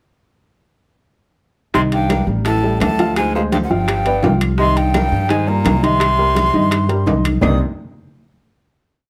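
Afro-Cuban jazz with a sultry, fiery mood, this brief complete piece starts at 1.7 s with a breathy flute carrying a motif-based melody in period phrases, its soft attack, vibrato and slightly unsteady tone sitting over lifted highs. Beneath it, a vintage baritone saxophone plays a second line in octave doubling, while an intimate baby grand piano lays down a montuno in octaves with short sustain and audible action noise. An up-front upright bass, dark and plucked on steel strings, plays a tumbao that anticipates the chords. The percussion is kept low: distant congas with slaps and open strokes, round low-tuned bongos in steady eighths with hand bell, ringing close timbales playing shell pattern and bell, and saturated woody claves entering at 2.1 s with a two-bar time line in the background. Light reverb gives the warm ensemble a touch of space before it settles on a final minor ninth chord at 7.4 s.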